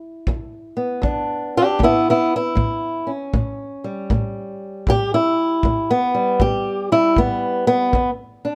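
A fingerpicked old ladder-braced acoustic guitar opens the piece at 0.0 seconds, carrying the melody in a soulful, gritty acoustic country blues at 78 BPM in 4/4 with a loping swing on the eighth notes. Its tone is dark, woody and boxy, with the dull bite of old strings, and it sits up front, ranging from E2 to G4 as it works from an E7 voicing with the third omitted into A7 before settling on E5 near the close. Just behind it, at 0.3 seconds, a kick drum enters, played with brushes and heard distant and roomy, its tight thump softened by a rolled-off top. A light reverb lends the whole a modest sense of space, and the guitar remains the clear solo voice throughout this short passage, which ends at 8.6 seconds as a fragment cut from a longer performance.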